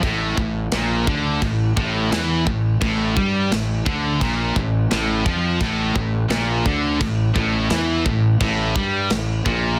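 A dark, relentless heavy metal riff hits at once in this short cut from a longer piece, with three distorted guitars, a growling bass and a tight drum kit all starting together on an A5 chord at a steady 86 BPM in 4/4. The guitars sit in the background: one is double-tracked and compressed, while the other two are scooped, high-gain tones, all bright and picked in the low register. Up front, a fingered electric bass carries a fuzzy, overdriven growl, blending a direct signal with an amped one. The acoustic kit sounds mid-forward in a studio room, with a medium-tuned snare, crash cymbal and a tight kick that is softly clipped. The drums cut off at 9.6 seconds, just before the guitars and bass end at 9.8 seconds, and the whole mix is dry, dense and heavily limited in a modern style.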